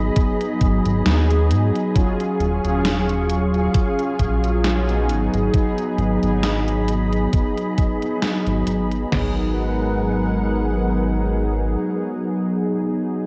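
A worn, warbling cassette haze hangs over this short vaporwave fragment, its pitch drifting woozily under light reverb and a digital ambience that deepens the melancholic mood. A mellow synth brass carries the accompaniment, its round, full-bodied tone thickened by analog chorus and tape echo, while a soft string machine holds silky, slowly blooming chords in the background, roughened by a vintage 12-bit sampler grit. Beneath them, a chorused synth bass sits up front with a dark, glossy pulse that gives the low end a retro sheen. Two drum machines share the groove from 0.2 seconds: a detuned 8-bit kit with a thumpy kick, medium-tuned snare, toms and crash, and a quieter gated 80s unit whose hi-hat and overdriven snare ring out through gated reverb in a large room. The drums drop away shortly after 9 seconds, leaving the bass, strings and brass to drift over a G#m7 harmony. The bass bows out first, then the strings, and the brass lingers until the fragment ends at around 13.3 seconds.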